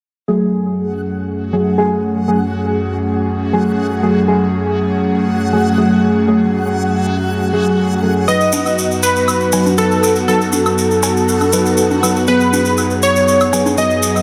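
This bittersweet, dreamy progressive house excerpt at 120 BPM in F# dorian opens at 0.3 s with deep, mellow and dark chord stabs treated with chorus, phaser and digital delay. They are soon joined by an up-front, breathy pad with a vintage warble and a bright, reversed granular texture swelling in its own reverb, all floating over F#madd9 in a lush hall. At 8.3 s, as the harmony moves to B/F#, a punchy, catchy unison lead with digital delay takes the melody alongside grainy, distant maracas, and analog-style congas, woodblock and cowbell follow in the background.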